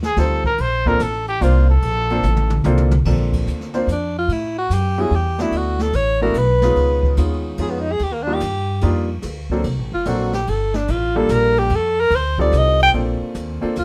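Relaxed small-group jazz waltz in Bb major at 146 BPM with a swung 3/4 feel, where a warm, vibrato-laced trumpet solos briefly over woody pizzicato upright bass, dark brushed drums and a clear grand piano until a drum fill hands off at 3.1 seconds to a clear alto saxophone solo with light vibrato and scooped notes that carries the rest of this short cut-down passage in light reverb.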